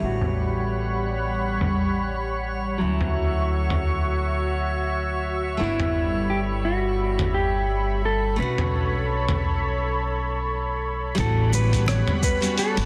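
A thick, warbling sawtooth pad sits up front with chorus, holding sustained chords over a woody pizzicato upright bass and a full-bodied, fingerpicked nylon-string guitar with tape echo, in a blissful, smooth sunset chillout groove at 86 BPM with a light 16th-note swing. A gritty, tape-warm sampler-style kit of hi-hat, rim click, shaker and toms enters at 0.2 seconds; filter sweeps move through the drums and the nylon guitar while a glassy texture of drifting overtones floats above, and a dark, clean electric guitar with delay takes the melody from 5.6 seconds. At 11.2 seconds the chords return to A13 as a soft, overdriven electronic kick joins, followed at 11.5 seconds by very quiet, bright congas, all under a plate reverb in this dense, heavily limited excerpt from a longer piece.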